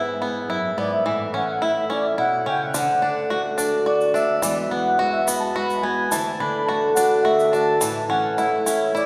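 Acoustic folk in a peaceful, hopeful 3/4 lilt, this short passage from a longer piece is led by a mellow, reedy accordion solo with a slow-beating, dark, smooth tone over an up-front fingerpicked steel-string guitar that sounds bright, full-bodied and freshly strung. A twangy, percussive banjo played with fingerpicks adds arpeggios, and a grainy tube shaker joins at 2.7 seconds. A lush church reverb with a 2.4-second decay surrounds the small ensemble as the chords move gently through E/G#, A, D, Eadd9 and Dadd9.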